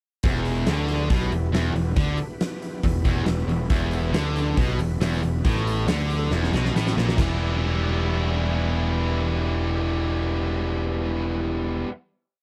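Classic rock in E minor at 138 BPM, this short, complete piece has a gritty, driving feel in a straight 4/4. A fuzz-laden, punchy picked bass sits up front with simple root-and-fifth lines that double the guitar riff, while an overdriven electric guitar plays a bright single-note riff alongside a tight distorted guitar tucked in the background. A huge arena drum kit drives a big rock groove with a fat snare, punchy kick and bright cymbals in a pumping hall sound, and a very quiet, jingly tambourine joins from 3.9 s. Underneath, a thick overdriven tonewheel organ holds sustained chords through a slow rotary speaker with chorus vibrato, swelling and shifting inversions at a very low level. After a drum fill, the kit drops out at 7.3 s and the band rings out on a final chord, with the guitars lasting until 11.9 s in a dry sound with little reverb.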